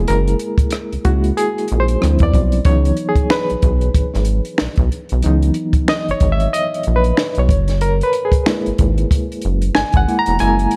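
A barky, reedy electric piano carries the lead through the whole excerpt, lightly overdriven with a fast tremolo, voicing chords that move from F#9 through Dm11 and C#m11 and back to F#9. This is late-night, sultry neo-soul R&B at 93 BPM in C# dorian, with a 16th-note swing. A rubbery, hollow square-wave bass sits up front with a plucky, resonant bounce, while a compact cocktail kit of finger snaps, hi-hat, punchy kick, rim click and a high-tuned snare adds a dark, smooth small-room pulse, all within a dusky studio reverb.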